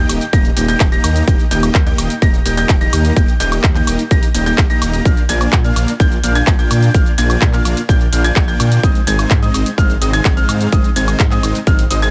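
Festival progressive house at 127 BPM in Eb major, this triumphant, uplifting excerpt cut from a longer piece moves from Eb to Bb at 5.1 seconds and Ab at 8.8 seconds, with a huge, compressed supersaw riff and dark, mellow concert grand piano arpeggios high in the register, both carrying sidechain pumping and delay, over a thick, chorused detuned saw bass, a layered big-room dance kit of handclaps, hi-hat, shaker and woodblock, and a punchy electronic kick sitting up front in a dry mix.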